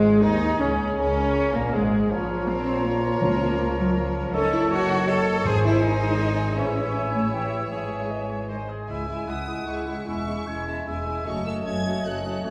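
A stormy, dramatic fast romantic movement for symphony orchestra in 3/4 at 149-163 BPM, cut from a longer piece, opens with a smooth violin section carrying the melody over rich, close cellos and a distant double bass section, while a clear clarinet, an intense second violin section, an airy silver flute, a roomy oboe, a mellow bassoon, focused violas and very quiet horn chords fill in the harmony, timpani in medium mallets sound from 3.2 to 6.0 seconds, the music settles into C# minor from 4.3 seconds, and a wet scoring-stage reverb places the whole orchestra further back in the room.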